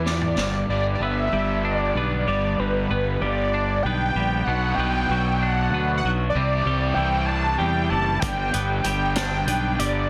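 Wistful yet carefree, this short indie rock excerpt moves at 64 BPM in a straight 6/8, sitting in G major and cut from a longer piece. A vintage drum kit opens with a brief fill in the first moments, its high-tuned snare, punchy kick, hi-hat and toms carrying a mid-forward, rolled-off character, before dropping out and returning at 8.2 seconds. Throughout, a thick, detuned unison lead built from sawtooth and triangle tones carries the melody with a fast attack, sustained notes, vibrato and a slapback echo. Beneath it, a bright, twangy twelve-string electric guitar and an overdriven electric guitar, treated with lush chorus and slapback echo, each play a riff. A round, fuzz-drenched fingered bass sits up front with a punchy, dark growl. The harmony moves from G to Bm, then Cadd9 and back to G, all within a dense, heavily limited modern master with moderate studio reverb.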